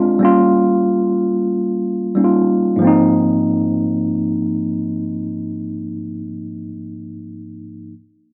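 A lightly reverberant studio ambience surrounds this short hip hop excerpt, which moves at 92 BPM in 4/4 with a 16th-note swing and sits in Ab major, carrying a warm, confident mood. A worn, slightly out-of-tune tine electric piano plays accompaniment throughout, up front and clean, filtered at both ends of its range, voicing an Eb9 chord before shifting to Ab69 at 2.8 seconds, until it stops at 7.9 seconds.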